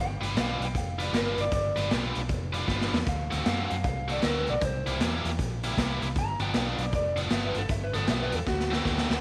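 Framed by a moderate echo-chamber reverb, this swaggering, soulful electric blues shuffle excerpt sets a dark, slightly broken-up lead guitar through a small old amp over a biting overdriven riff guitar, a round, foam-muted fingered bass and a gritty, saturated garage drum kit with a punchy kick in a bright stone room, with drum fills at 2.7 and 8.5 seconds as the chords move from G7 through D7 and C7.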